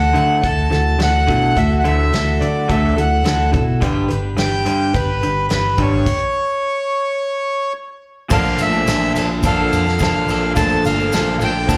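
Heard as a live club gig through the venue's PA with light reverb, this nostalgic, hopeful folk rock and heartland rock excerpt at 107 BPM sets a reedy, smooth accordion melody up front over shimmering, octave-doubled picked twelve-string acoustic guitar, a slightly broken-up, lo-fi electric guitar riff through a small old amp (these three carrying slapback echo), round fingered electric bass and a soft brush drum kit with dark cymbals and a punchy kick, pausing for a stop from 6.1 to 8.3 seconds before a grainy tube shaker enters in the background at 8.3 seconds as the harmony moves to Bbmaj7.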